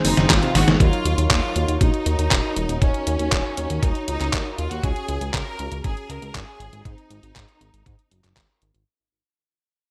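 Over a straight 4/4 groove of a thumpy electronic kick and an up-front detuned 8-bit drum machine with handclaps, hi-hat and a gated-reverb snare, this bittersweet, melodramatic Italo disco piece rides a glossy chorused synth bass and fat, brassy synth stabs, while a distant, lush violin section with tape echo carries the melody, a round analog pluck arpeggio in the background stops at 0.8 seconds, and the whole piece fades out from that point.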